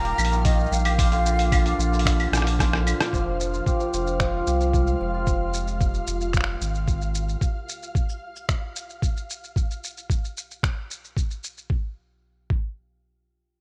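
Wistful and delicate, this 112 BPM folktronica excerpt in F dorian opens with a breathy silver flute melody and shimmering hammered cimbalom arpeggios, both touched with tape echo, over a warbling, detuned pad with chorus and phaser, a deep round sub bass, a flickering grainy texture, a muffled lo-fi kit of claves, finger snaps, hi-hat, rim click and shaker, and a thumpy up-front kick. A drum fill runs from 2.3 to 3.1 seconds before the harmony settles on Fmadd9, and the bass and pad stop at 7.4 seconds, leaving the cimbalom, the grainy texture and the drums to carry on in a lightly reverberant room with a faint mains hum.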